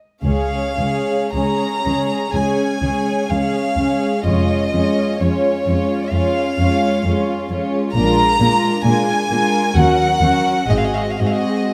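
The recording sits in a moderate recital-hall reverb, caught by close, detailed microphones that keep the bowed strings intimate. This is a slow, lyrical classical movement for string orchestra in Db major, moving at 52-68 BPM in 4/4 with a rubato feel, cut from a longer piece. A warm chamber violin section carries the melody up front with light vibrato and a soft, sul tasto attack, while a second, darker violin section plays a smooth-topped second line beneath it. A lush, woody viola section supplies the accompaniment, and the bass is shared by a dark cello section and a pure, floating double bass section, both bowed sul tasto. The harmony rests on Db before shifting to Db/F at 4.3 seconds, then passes through Bb7 and Ebm7 to close on Ab7, with the cellos and basses stopping just before the upper strings finish at 11.7 seconds.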